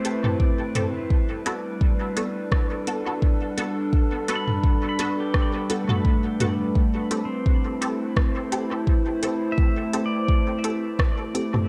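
Spacious and hazy, this ambient dub excerpt moves at 85 BPM in 4/4 with a light sixteenth-note swing, sitting in A dorian as the harmony drifts from Am7 to Gmaj9 at 1.1 seconds and back to Am7 at 6.8 seconds. A warbling, nostalgic pad holds sustained chords up front, its lo-fi sampler grit, chorus and built-in reverb giving it a dark, slow-blooming glow. Pedal steel guitar plays clean, compressed arpeggios with fingerpicks, slide and volume swells, each phrase trailing into dub echo. A muted, detuned chord stab punctuates the texture with short filter plucks, colored by phaser, ensemble chorus and echo. An organic electronic kit of crisp hats, rim clicks and toms, also sent through dub echo, sits beneath a deep kick that enters at 0.4 seconds and stands out as the loudest part, both drums re-recorded in a large room for a dark, light-reverbed digital ambience.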